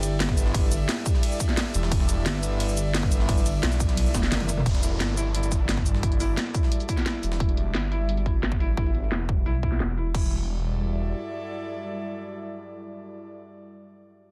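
A dense, heavily limited digital mix opens on a drop of dark technical drum and bass at 175 BPM in E minor, where an up-front metallic FM wobble bass churns beneath a punchy, tape-tinged electronic kick, a layered kit with cracking snare and bright hats re-recorded in a small room, and a very quiet, gritty pitched-up jungle sampler kit, joined at 1.7 seconds by a thick, swirling detuned saw bass with phaser and overdrive. Deep, moody, warbling pads and an airy, breathy pad with chorus pump behind the beat, while a drum fill and band accent lead at 4.7 seconds into a section over Emadd9 where a downlifter sinks in the background and filter sweeps move across the drums and saw bass. A soft, felt-muted upright piano with audible action noise plays delayed, low-passed arpeggios on E4 until 10.3 seconds, after which the saw bass lingers briefly and the pads hold on in this dark, mechanical excerpt.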